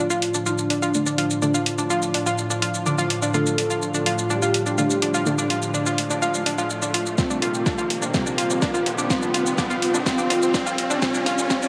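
A straight 4/4 groove of hi-hat, shaker, fat tape-warmed snare and toms drives this hypnotic, melancholic melodic techno build-up. A deep electronic kick and a drum fill arrive at 7.2 seconds as the harmony moves from Dm to Cm7. Over a smooth, warbling analog pad, a thick unison lead with vibrato carries the melody and a bright, round analog pluck plays arpeggios, while a brassy, nasal synth brass stab sits in the background. The lead and stab both move through filter sweeps, a riser joins at 3.9 seconds, and sidechain pumping, dub echo and a lush hall reverb fill out the space.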